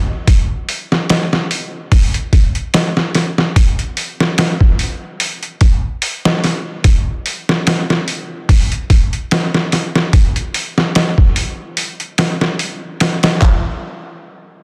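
A dense, heavily limited modern mix with light reverb and a digital ambience frames this smoky, brooding trip hop fragment in 4/4, its sixteenths carrying a gentle swing. A sampler-style drum kit, compressed, pitched down and gritty, sits up front from 0.3 to 13.6 seconds, with a thumpy kick, a medium-tuned snare, hi-hat and handclaps. The kit's tape-warm grain gives the groove its smoky, brooding character.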